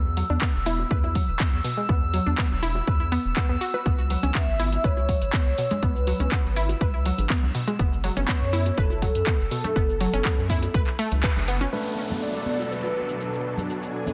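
A dense, heavily limited mix bathed in lush hall reverb carries this expansive, dreamy progressive house excerpt at 122 BPM in B dorian, where a round analog bass, glassy drifting harmonics, a bright detuned unison pluck with a filter sweep, overdriven house claps and hats, soft congas and bongos, and a punchy up-front kick play together before a velvety, vibrato-laced synth lead enters at 4.4 seconds, and at 11.7 seconds a phased supersaw pad, a felt-muted upright piano with audible action noise, and a downlifter arrive over a Bm7 chord.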